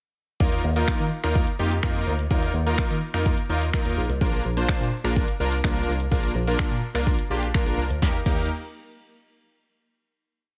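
This short, complete dance-pop piece has a summery, upbeat mood and a straight four-on-the-floor groove. A deep house drum kit drives it from 0.4 seconds, its deep kick and punchy snare layered with finger snaps, hi-hat and a crash cymbal, all placed up front with the character of a small room. A bell-like tine electric piano carries the bass, playing a syncopated line with muted ghost notes in a clean, direct tone. Above it, a big, fat polysynth built from detuned sawtooth and triangle waves with ring modulation plays bold, sustained, close-voiced syncopated chords with a fast attack. Both the keys and the synth breathe with sidechain pumping. The mix is dry and the harmony moves from an Ebsus2 to a Bb before the piece settles on a final Eb chord at 8.0 seconds.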